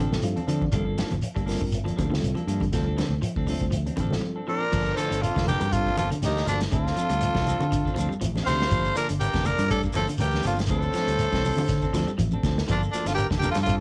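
Driving and defiant, this afrobeat excerpt in G minor moves at 121 BPM with a light sixteenth-note swing, alternating between Dm7 and Gm9 over a cassette-worn home recording in a light room. A worn, slightly out-of-tune tine electric piano with overdrive opens with a fill and comps until 4.4 seconds, alongside a twangy guitar arpeggio at the edge of break-up, bright clean guitar stabs, a dark, round fingered bass, a pumping vintage kit with dark cymbals and a punchy kick, very quiet low-tuned congas and a grainy shekere. At 4.5 seconds a raspy, growling tenor saxophone takes the melody up front, shadowed by a forceful baritone saxophone and a distant trumpet bathed in plate reverb.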